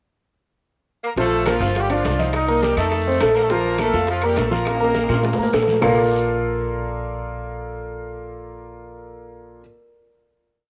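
Festive and joyful, this short salsa piece in Bb major races along at 207 BPM: a bright, loose horn section with tape echo states a motif-based melody partly doubled in octaves from 1.0 s. The clear, up-front grand piano, with audible action noise and a cassette tint, plays a montuno in octaves while a dark, thumpy gut-string upright bass plays a tumbao that anticipates the chords. Percussion fills out the groove with very quiet bongos in steady eighths with hand bell, congas with slaps and open strokes, ringing timbales on shell and bell and a distant two-bar clave line, joined by a raspy guiro, all in a wet spring reverb, before a drum fill leads to a final Bbmaj7 at 5.8 s.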